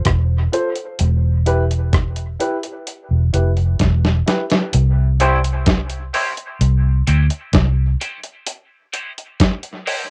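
Spacious and laid-back, this dub reggae excerpt sits in a straight 4/4 groove, moving from F to E minor before settling on C. A dusty, sampler-style drum kit with a thumpy kick, medium-tuned snare, rim clicks and hi-hat carries a gritty, tape-soaked character up front, with a drum fill arriving near 3.8 seconds. Beside it, a round, foam-muted electric bass rumbles low and dark until about 7.9 seconds. A woody, slightly detuned upright piano punctuates the groove with mellow stabs, bathed in dub echo and plate reverb. At 5.2 seconds a lo-fi electric guitar through a small old amp joins as accompaniment, slightly broken-up and shimmering with analog chorus alongside its own echo and reverb. The whole home cassette recording has a moderate booth ambience, with breaks framing the opening and closing moments and a filter sweep running through most of the passage.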